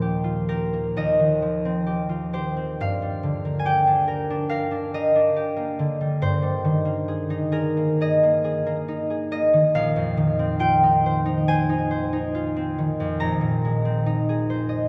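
A solo concert harp opens on a ringing Ebadd9 chord, fingerpicked and up front, and drifts through Fsus2/Eb, Gm7 and Abadd9/G to Bb9sus4 and Abadd9/Bb. This dreamy, serene classical piece moves at about 69 BPM in 4/4, with uneven, rubato beats, and the harp is tuned to A4 = 439 Hz and spans from Bb1 to Bb5. A long cathedral reverb in a church or concert hall gives the harp a lingering glow across the 14.9-second excerpt, which is cut from a longer piece.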